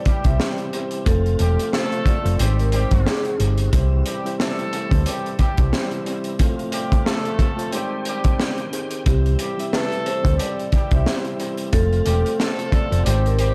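A crunchy breakbeat kit with a tight kick, a high-tuned snare and hi-hat opens this boom-bap hip-hop cut, its saturated, gritty sound rolled off at the top and touched with dub echo, and a round, punchy hollow-body electric bass follows a moment later, sitting up front. The mood is nostalgic yet confident, with a swung 16th-note feel over a cycle of C, F and Abmaj7 chords. A mellow, clean tine electric piano carries the accompaniment throughout, while a full tonewheel organ holds sustained chords in the background, colored by chorus vibrato, key click and a fast rotary speaker. A distant, roomy jazz-style horn section adds warm stabs with light vibrato and octave doubling, its hits trailing off in dub echo. The metallic, ringing vibraphone, played with medium hard mallets in a boxy small room, states the melody in two passages, first until 3.4 seconds and again from 9.1 seconds, its notes repeating through dub echo. 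Light studio reverb gives the echo-heavy mix its space in this excerpt taken from a longer piece.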